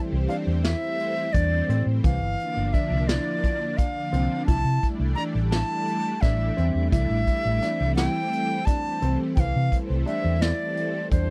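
This progressive instrumental excerpt moves in 7/8 at 172 BPM counted in eighths, with a straight, intricate and bright feel in C mixolydian, tuned to A4 = 441 Hz. A reedy wooden flute carries the melody from 0.3 seconds, airy and close-miked with vibrato and tongued notes, sitting up front in its high register. Beneath it a warm baby grand piano plays arpeggios while a silky analog string pad, with a soft attack, detuned sawtooth character, ensemble chorus and a moving notch, sustains the accompaniment. A dark, round hollow-body short-scale electric bass, fingered and amped, anchors the low end, and a vintage brush kit with a high-tuned snare, tight kick and hi-hat adds a natural small-room warmth with a rolled-off top. The harmony shifts from C69 to Bb, then C6, and returns to C69 at 9.4 seconds, all captured in a dry, close 1970s-style studio sound.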